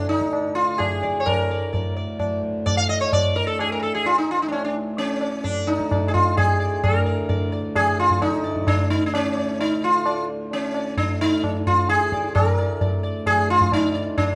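A wet recital-hall reverb with a 1.8-second tail surrounds this solemn, meditative fragment of Hindustani classical music in raga Todi on D, moving at 130 BPM in 3/4 with a straight feel. An up-front sitar carries the melody from C#4 to F5 with a buzzing, shimmering tone alive with sympathetic strings, while a reedy, breathing hand-pumped harmonium holds a low drone between D2 and A2 beneath it. A close, high-tuned tabla enters at 0.1 seconds, its ringing strokes sitting just behind the sitar, and the music moves into a new section at 6.8 seconds.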